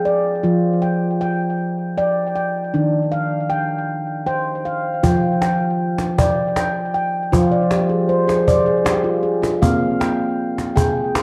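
A ringing stainless-steel handpan opens alone, played with the fingertips in meditative arpeggios over an F kumoi scale at 52 BPM in a straight 6/8, its tone colored by cassette tape and analog delay, until a snappy acoustic cajon with snares, struck with soft hands in a live room, joins up front at 5.0 seconds, followed by a handpan fill from 7.3 to 9.6 seconds, the chords moving from Dmadd11/F and Eb to Fm69 and Bb5 in this hypnotic world excerpt bathed in a wet spring reverb and the intimacy of a home cassette recording.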